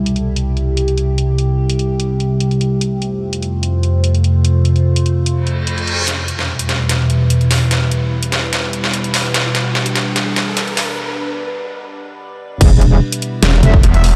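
Menacing and aggressive, this half-time heavy wobble dubstep excerpt at 147 BPM in E phrygian opens on a mellow, morphing wavetable pad over C and F chords with an overdriven dubstep kit of deep snare, hi-hat and crash, builds through a drum fill and a background reverse cymbal and riser into a brief break, then drops at 12.6 seconds into a metallic wobble bass and a layered electronic kick, joined shortly after by a growling, detuned saw bass, with a clear brass ensemble stabbing briefly near the end, all within a dreamy mix soaked in huge ambient reverb.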